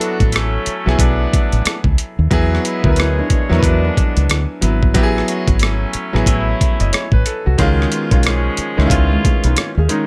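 A gritty, overdriven boom bap drum kit sits up front in this smooth, late-night R&B and neo-soul excerpt, its compressed, sampler-style hi-hat, thumpy kick and rim click sounding re-recorded in a small room at a relaxed 91 BPM in 4/4, with a 61% swing on the sixteenths. From 0.2 seconds a dark, round fingered electric bass joins, foam-muted and punchy in the low register. A brilliant grand piano with short sustain carries the accompaniment through Bm7, E7, A6 and C#7, while a clear, tight horn section adds vintage pop-style stabs with light vibrato, both set in plate reverb. In the background, a dark, thumb-plucked flamenco guitar plays a second line at 3.2 seconds and again from 9.1 seconds, its finger squeak audible through the plate reverb. A light reverb surrounds the whole mix.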